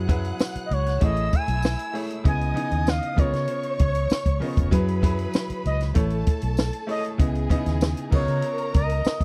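A compact cocktail drum kit, dry and up front with a tight kick, high-tuned snare and dark cymbals, locks into a straight 4/4 groove at 97 BPM in this short cut from a lush, romantic 1970s-style soul piece, alongside a round, punchy foam-muted electric bass and, from 0.4 seconds, a jingly tambourine set distant in the background. A bright grand piano with short sustain plays through lush chords such as F#9sus4, Amaj7, C#m9 and C#13, while a bowed string section adds a smooth second line with vibrato and portamento. From 0.7 seconds a mellow synth lead, blending sawtooth and triangle tones with a soft attack, chorus and vibrato, carries the sustained melody up front in a dry, close studio sound.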